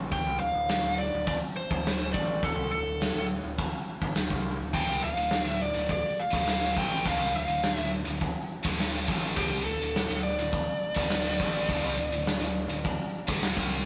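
A growling, punchy electric bass, picked and overdriven, opens this aggressive hard rock excerpt, with a biting lead guitar and a big acoustic rock kit arriving almost at once at 0.1 seconds. The tempo sits at a straight 104 BPM in 4/4, in D minor over a D5 chord, with tuning set slightly sharp at A4 = 443 Hz. Up front, the lead guitar carries the melody between G4 and G5 with a warm overdriven tone. The drums put hi-hat, a tight kick and a medium-tuned snare forward in a bright stone room. At 4.7 seconds a heavy, scooped high-gain guitar joins with a double-tracked, distorted riff, thickening the menacing mood. The whole has the rough feel of a rehearsal-room recording, with light reverb and saturation, and it runs to about 13.9 seconds as a section cut from a longer piece.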